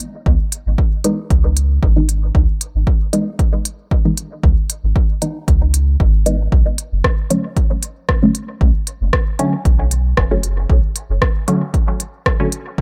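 A muted, detuned sawtooth chord stab leads this hazy dub techno excerpt, its dark, full-bodied filtered plucks colored by a phaser, dub echo and a filter sweep that runs throughout, with sidechain pumping making it breathe. The stab enters at 1.0 s and shifts from C#m9 to Bm9 at 6.5 s. Underneath, a round, soft sub bass built from triangle and square waves holds sustained, mellow notes and pumps with the sidechain as well. A punchy electronic kick sits up front beside a house kit of smooth hi-hats and rim clicks, both layered and re-recorded in a small room. The groove carries a light swing on the sixteenths, and a digital ambience gives the whole piece a deep, spacious setting.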